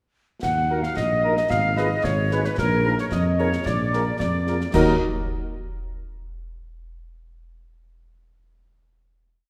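In a straight 2/4 at 111 BPM, this brief, stern and resolute military-style march for wind band in Eb minor opens at 0.4 seconds with a close-miked, dark tuba up front placing bass on the beats beneath a close, dry marching snare over concert bass drum with dark clash cymbals, while a clear, tight woodwind section carries the tune and an airy, hollow small flute group doubles it in unison and thirds, joined at 0.7 seconds by a distant, roomy trumpet section and background French horns playing after-beat and sustained chords, all moving from Ebm through Bb7 to a final Ebm chord at 4.7 seconds in the wet reverb of a scoring stage.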